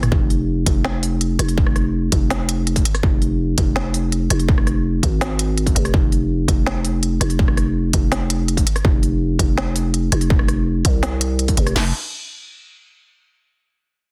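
A half-time drum and bass groove in 4/4 drives this tense, cinematic fragment cut from a longer piece, built on two layered electronic kits. Up front, the industrial kit pairs a distorted kick and clanging snare with crash cymbal, its tape-tinged sound given distortion and studio reverb, while the organic electronic kit adds a woody snare, crisp hi-hats, rim clicks and toms with its own studio reverb. A growling, buzzy 808-style bass with a fast attack and decaying sine tone sits prominently beneath, and the dense, heavily limited master keeps the whole mix close and dry until the parts drop out near 11.9 seconds.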